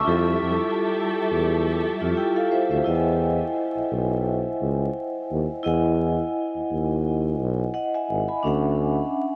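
Steeped in a dreamy wash of huge ambient reverb and vinyl crackle, this soulful, nostalgic hip hop excerpt at 86 BPM with a light 16th-note swing pairs a metallic, ringing vibraphone played with medium mallets and motor vibrato over a soft-attack, jazz-style solo tuba with vibrato up front. A dark, lush bowed string section holds expressive sustained chords only until 2.8 seconds, as the harmony moves from Fmaj9 to Emaj9 at 2.9 seconds and on to Dmaj9.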